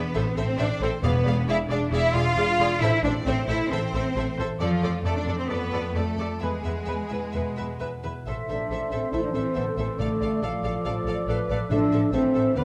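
A dark, reverberant recital-hall sound frames this urgent, dramatic excerpt from a fast romantic orchestral movement, where up-front cellos and a rich double bass section anchor focused violins, distant violas, a background violin line and ringing harp arpeggios, brief timpani strokes mark 1.0 s, and from 8.2 s airy flutes, a distant cor anglais, a dark clarinet and mellow French horn chords join before the timpani returns at 10.0 s.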